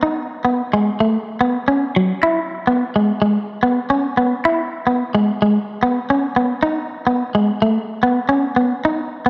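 A moderate plate reverb gives this short, danceable highlife passage a glowing sense of space, with the clean electric guitar sitting up front on its own from 0.0 to 9.3 seconds. The bright, twangy, picked tone is compressed and touched with spring reverb, moving between F#3 and E4 in E major. At 109 BPM in 4/4 with a light swing on the sixteenths, it feels like a fragment lifted from a longer piece.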